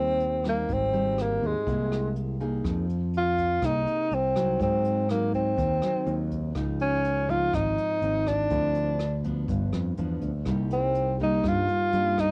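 A breathy, mellow tenor saxophone carries the melody up front with vibrato, subtone and scooped notes, over a dark, fingerpicked classical nylon-string guitar and a warm fingered electric bass, while a brushed jazz kit of hi-hat, rim click and punchy kick joins at 0.2 seconds from a distant, roomy spot. This sunny, romantic bossa nova in F minor, cut from a longer piece, moves at 123 BPM in a straight 4/4, its chords drifting from Abmaj7 through Fm7, Dbmaj9 and G7 to Cm7 at 10.5 seconds. The home cassette recording has light reverb, tape colours the saxophone, guitar and drums, and the kit has a rolled-off top.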